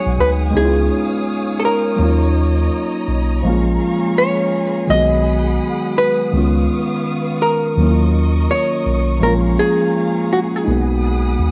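Nostalgic and reflective, this lo-fi hip hop excerpt drifts over a swung 4/4 groove as a dark, hollow-body archtop guitar carries the melody through analog delay, while muted, felt-like synth keys with chorus and cassette coloring supply soft, intimate accompaniment. A mellow tine electric piano, clean and up front with transformer saturation, holds down the bass from 0.1 seconds, and a bowed studio string section sits low in the mix, playing sustained chords with expressive vibrato and portamento. The whole mix is wrapped in light reverb, worn, warbling old tape, vinyl crackle and pitch drift, with a dulled top end.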